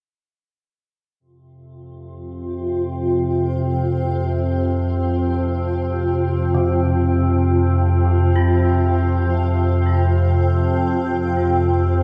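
Soaked in a lush hall reverb with a long 2.8-second tail, this dreamy excerpt from a longer dark ambient drone unfolds in free time, tuned to A4 = 442 Hz and resting on an F5 chord, with a desolate, ominous mood. A mellow, organ-like drone with ensemble chorus settles in low and up front at 2.0 s, and at 2.2 s a cloudy granular pad joins it, holding evolving, blurred chords through detuned unison and shimmer reverb. From 6.5 s a dark, bronze gamelan-type metallophone rings out arpeggios in the background, its shimmering beats trailing through delay and shimmer reverb as it fades out.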